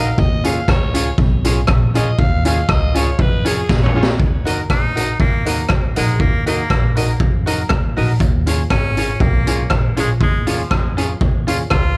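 Energetic and driving, this short ska cut moves at 120 BPM in Eb minor with a light swing on the eighth notes, and it is heard as a portion of a longer piece. A raspy, punchy alto saxophone opens with a forceful solo, its scooped notes and light vibrato carried on tape echo, before a drum fill at 3.7 seconds hands the melody over to an edgy tenor saxophone that takes up the line at 4.7 seconds, also with tape echo. Underneath, a semi-hollow electric guitar offers clean, picked accompaniment while a jangly, metallic tack piano punctuates the harmony with percussive stabs. A woody, thumpy upright bass plucks out the low end, and a raw garage drum kit sits up front with a high-tuned snare, boomy kick, rim clicks and toms, sounding saturated and gritty with a rolled-off top. The harmony moves from Db to Ebm at 4.2 seconds and back to Db, and the whole is captured with a dry sound.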